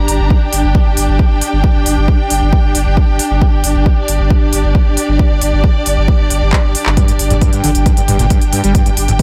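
A driving, straight 4/4 pulse at 135 BPM anchors this hypnotic, industrial slice of peak-time techno, where a punchy, overdriven kick sits up front over a deep, thick saturated sub bass and a lush bowed string section, both pumping against the sidechain, while a layered electronic kit of handclaps, smooth hats and toms runs alongside, a drum fill arrives at 6.5 seconds, and at 7.0 seconds a squelchy, gritty acid bass riff enters with distortion and chorus, all in a dry mix.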